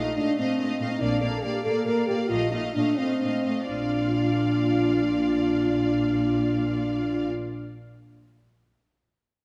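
Wet scoring-stage reverb surrounds this spirited, lively fragment of a quick classical-period orchestral movement in 6/8 and Bb major at 82-95 BPM, where an up-front, mellow French horn section holds sustained chords over a close, smooth cello section on a Bb bass, a focused viola accompaniment, a lush, distant first violin melody on F5 and a light-vibrato second violin line, with a double bass section joining at 1.0 s as the tempo slows from 0.4 to 3.7 s and the harmony moves between F7 over Bb and Bb.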